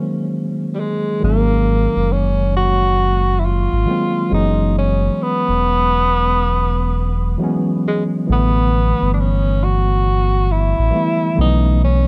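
A slow 68 BPM groove in 4/4 sways with a 65% swing on the sixteenths, setting a cosy, nostalgic lo-fi hip hop mood in this short cut from a longer piece. A mellow, clean tine electric piano plays accompaniment from the start, its tone filtered and heard as if through built-in speakers. Up front, a breathy tenor saxophone carries the melody in a jazz-style solo, with subtone, vibrato and scooped notes, also softened by a low-pass filter. After a brief opening break, a deep, full sine sub bass with an octave enters at 1.2 seconds, with a fast attack and sustained notes sitting prominently under the other parts until the end at 12.1 seconds. The harmony moves through suspended ninth chords, Ab9sus4, Gb9sus4, A9sus4 and B9sus4, within a dark, warm production that has a light reverb.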